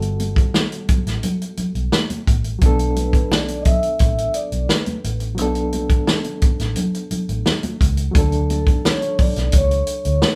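Up front, a vintage acoustic drum kit anchors this lush 1970s-style soul piece, its punchy kick, medium-tuned snare and hi-hat carrying a natural small-room sound with a rolled-off top. Beneath it, a dark, round electric bass, foam-muted and amped, holds the low end, while an overdriven reed electric piano run through a combo amp adds a barky, gritty accompaniment shimmering with fast tremolo. High-tuned congas join at 0.2 s, played with soft hands on thick, damped skins and sitting in the background. At 3.0 s a mellow vibraphone with soft mallets takes the melody, its metallic ringing tone shaded by slow motor vibrato and a band-limited, vintage character. The harmony moves from Gmaj9 to Bm7 and then Dmaj7, and the band, playing live together in one room with moderate studio reverb, gives this excerpt from a longer piece a smooth, cinematic mood.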